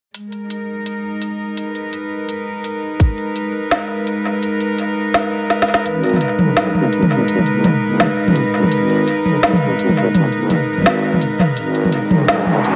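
Half-time drum and bass at 168 BPM in G# minor, cinematic and tense, with a reedy, gut-string cello section holding sustained chords on G#madd9 under sidechain pumping and a low-pass filter, an organic electronic kit of woody snare, smooth hats and toms soaked in dub echo, a tight layered kick struck briefly at 3.0 seconds, a deep, dark square-and-sine wobble bass with chorus entering at 5.9 seconds as a build-up begins after a drum fill, and an electronic riser arriving at 12.0 seconds, all set in spring reverb within an echo-heavy mix cut from a longer piece.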